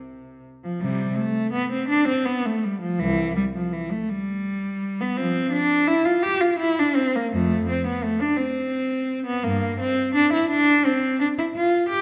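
Classical baroque-style suite movement for unaccompanied cello in C major, serene and dance-like in a rubato 6/8 at 56 BPM, where a single up-front bowed cello, focused and warm with vibrato and a smooth top, ranges from C2 to G4 in a recital hall's wet reverb across this 12-second excerpt cut from a longer piece.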